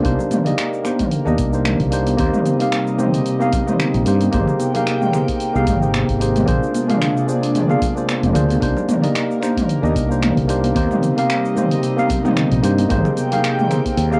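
Warm and relaxed, this sunset chillout clip at 112 BPM in Eb major swings gently as a barky, slightly out-of-tune tine electric piano, up front with analog delay and plate reverb, rides over an airy, breathy pad with chorus, a round, dark fretless electric bass, a deep house kit of finger snaps, dark hi-hat, shaker and toms with a cassette-tape grain, a deep analog electronic kick that stops at 13.9 seconds, and very quiet, high-tuned, ringing congas entering at 0.2 seconds, all moving through Cm9, Eb6, Abmaj9 and Bb9 in a small, wet booth with a homespun cassette sound.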